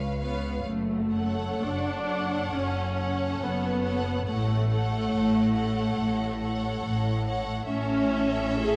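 Rubato pulls freely at a slow 4/4 pulse of 58-73 BPM in this melancholic, yearning string orchestra movement in F# minor, cut from a longer piece, as the harmony moves from C#7 to F#m, then F#m/A, and settles on A. The first violins carry an expressive, lush melody high up with vibrato, the second violins add a smooth, even inner line close beneath them, and the up-front violas, entering at 0.2 s, supply rich accompaniment. Focused cellos and rich double basses anchor the bass, all bowed and set in a wet scoring-stage reverb within a dark, warm production.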